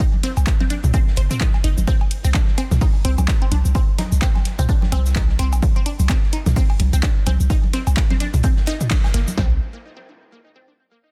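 A squelchy, resonant sawtooth blip pluck carries the riff from the very start, its detuned, ring-modulated tone run through phaser and delay and pumping against the sidechain as it moves between Bb3 and C5. This cut from a longer minimal techno piece sits at 128 BPM in C minor with a 58% swing on the sixteenths, and its mood is cool and clinical. Up front, a punchy analog drum machine with tape-warm kick and snare drives the groove, while a second layer from the same machine adds cabasa, handclaps and hi-hat, and a very quiet, gritty garage kit of hi-hat and snare sits in a bright stone room beneath them. Layered electronic congas, cowbell and toms fill out the percussion, and a deep sine sub bass with a pitch-drop attack enters at 0.4 seconds, pumping under the kick between G1 and C2. The whole band hits an accent at 8.9 seconds before the drums and percussion stop around 9.4 seconds, with the pluck and sub bass carrying on a moment longer into a brief closing section, all in a dense, heavily limited master with digital ambience.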